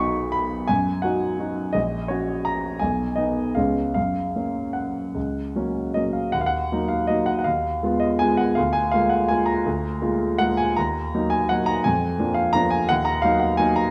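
Classical piano waltz, playful and sparkling, in which a solo grand piano with a warm, present, up-front tone spans A#1 to C#6 in a rubato 3/4 at 146-179 BPM, moving from F# major into Eb minor at 6.3 s, all set in a wet recital-hall reverb with a dark, warm production in this passage cut from a longer piece.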